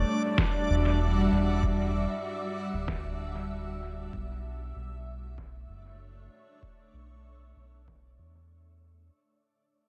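Ambient dub at 96 BPM in 4/4, meditative and spacious, this excerpt drifts from Em9 to Bm11 at 4.1 seconds over a cloudy, detuned granular pad and a round, dark analog bass sitting up front, while a reversed, dreamy texture swells brightly on D4 with its own built-in reverb. An overdriven deep electronic kick and a muffled, pitched-down, tape-warm snare with dub echo enter at 0.4 seconds and stop at 8.0 seconds, with a filter sweep running across the drums. The whole cut fades out under light digital ambience.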